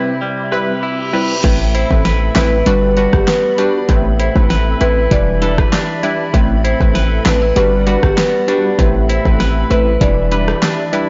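A blown-out, overdriven recording with light reverb and a dull top end carries this tough, hypnotic dancehall cut at 98 BPM, where sidechain-pumped sawtooth brass stabs, a hollow, flute-like pad and a twangy clean electric guitar playing arpeggios through delay open over Cmaj7, before a reverse cymbal at 0.8 seconds leads into a deep house drum kit with a fat, soft-clipped snare and a heavy 808-style bass at 1.4 seconds, and a woody rosewood marimba carries the melody through delay from 1.7 seconds over chords moving between Amadd9, Gmaj7 and Em7.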